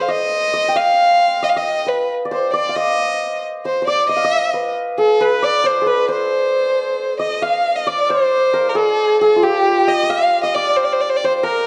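Hypnotic and melancholic, this excerpt of Persian modal ensemble music moves in a straight 6/8, with a new section arriving at 7.4 s. A single bowed violin carries the melody up front, warm and expressive with a soft attack, vibrato, portamento and a smooth top. A bright, hammered santur adds a shimmering, ringing second line, also up front, both sitting in a moderate recital-hall reverb with a dark overall production.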